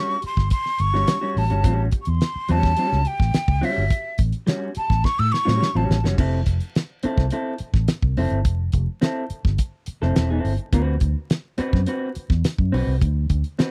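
Playful and gritty, this funk groove, cut from a longer piece, sits in a straight 4/4 feel with a dry, close 1970s-style studio sound and a layer of vinyl crackle. A breathy, mellow jazz flute carries the melody from the start, its hollow tone marked by vibrato and a crisp chiff on each attack, and its solo runs until 6.0 seconds. Under it, an electric guitar played through a small old amp supplies bright, twangy, slightly broken-up picked accompaniment, compressed and bathed in spring reverb. A vintage muted fingered electric bass adds a dark, round, foam-muted bottom, while a damped 70s drum kit drives the groove with a fat snare, tight kick, hi-hat and crash cymbal. A drum fill from 5.0 seconds leads into the second section at 6.2 seconds, where the harmony moves from A6 to Fmaj7 and later D13 as the guitar, bass and drums carry on.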